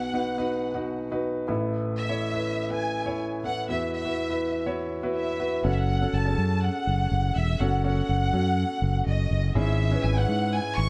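Earnest and dramatic, this piano-driven pop excerpt moves at 123 BPM in a straight 4/4, tuned slightly sharp to A4 = 441 Hz. An upright piano carries the accompaniment throughout, sitting up front with a woody, intimate tone, long sustain and audible action noise that gives it a vintage character. Above it, a violin section sings the melody in a rich, bowed ensemble sound, its soft attack and expressive vibrato adding lushness. At 5.6 seconds a fretless electric bass enters, punchy and direct, its amped tone colored by a lush chorus effect as the harmony turns from suspended chords toward F#m and C#m/G#. The production is dark and warm overall, placed in a moderate large studio reverb with a 0.8-second decay.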